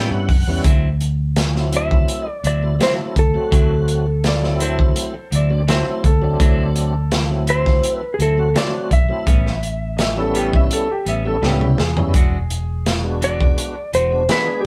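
Straight-eighth soul blues with a laid-back, soulful mood, cut from a longer piece and played live by a band in one room with moderate studio reverb. A lightly overdriven tonewheel organ with key click, chorus vibrato and a slow rotary speaker opens with a short fill and carries the accompaniment over a round, amped fingered electric bass, a gritty, saturated breakbeat kit with a punchy kick and a rolled-off top sitting up front, and dark, picked stabs from a clean electric guitar. A compressed lap steel played with fingerpicks takes the slide melody from 1.8 seconds, and a woody, slightly detuned upright piano adds a second line from 4.3 seconds, while the chords move through ninth voicings and a drum fill at 11.4 seconds leads into the final change.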